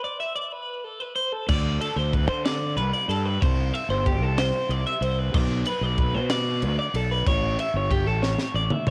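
A bright, twangy twelve-string electric guitar picks clean, compressed arpeggios with a cassette-tape tint, playing alone for the first 1.5 seconds of this intricate, wistful math rock and midwest emo fragment in A minor, set at 62 BPM in a straight 6/8. At 1.5 seconds, a growly, fuzz-overdriven fingered electric bass enters up front alongside an airy, polished fusion drum kit with a high-tuned snare and punchy kick, which is also touched by cassette tape. The chords move through Am, D5, Am7, Bm and A7 before a drum fill at 8.2 seconds, all within a home-recorded sound with studio reverb.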